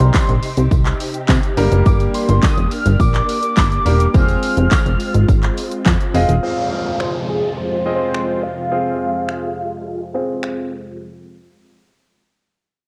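A punchy, funky analog bass sits up front in this energetic, driving dance-pop excerpt, its wave-folded, ring-modulated tone snapping with a fast filter pluck before decaying, and it drops out at 6.4 seconds. An electronic, layered pop kit keeps a straight pulse with a punchy kick, fat snare, bright hats, finger snaps, handclaps and shaker. A faint, jingly tambourine adds a small-room sparkle through the opening half. Above the groove, a velvety, detuned unison synth lead carries the melody with vibrato and chorus, while an intimate concert grand piano with audible action noise and long sustain supplies sidechain-pumped accompaniment. A silky vintage string machine holds soft, phased chords beneath, moving through Cm, Gm and Fm. From 6.4 seconds an electronic downlifter and a filter sweep join the second section, all wrapped in light digital reverb and the hazy character of a home cassette recording.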